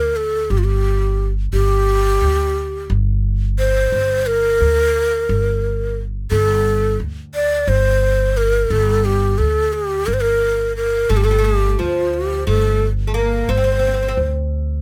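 Longing and melancholic, this short passage of Turkish music is cut from a longer piece and moves in an uneven 7/8 metre with a straight feel. A low ney carries the melody from the first second, its end-blown reed-cane tone breathy and gently warm, shaped by vibrato, crisp attacks and lifted highs, and it sits up front in the mix. Underneath, a pizzicato upright bass with steel strings holds the low end in a deep register, its woody sound also close and present. Near the end, at 11.1 seconds, a fretless oud enters as a quieter second line, plectrum-plucked on double strings with a bright, acoustic character. The recording is intimate and dry, with close, detailed microphones that bring out every breath and pluck.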